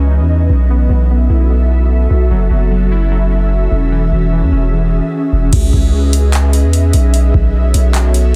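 Hazy and spacious, this atmospheric cloud-rap cut moves at 149 BPM in 4/4 with a half-time feel, set in C# minor and tuned slightly flat of standard pitch. An ethereal, airy pad holds sustained chords throughout, its detuned unison layers softened by ensemble chorus, built-in reverb, a low-pass filter and sidechain pumping, while a deep, mellow 808-style bass sits up front with long, decaying sine notes. Over the opening stretch, warbly lo-fi synth keys spin nostalgic arpeggios through chorus and tape echo, tracing a drifting progression from C#m9 through B7sus4 and F#m7 to E69 before falling away at 5.5 seconds. At that point a booming analog drum machine enters beneath the pad and bass, with a deep kick, metallic hi-hats, handclaps and a crash, its tape-tinged hits placed close and forward. The whole piece, a fragment of a longer track, carries a dense, heavily limited modern master with little room sound.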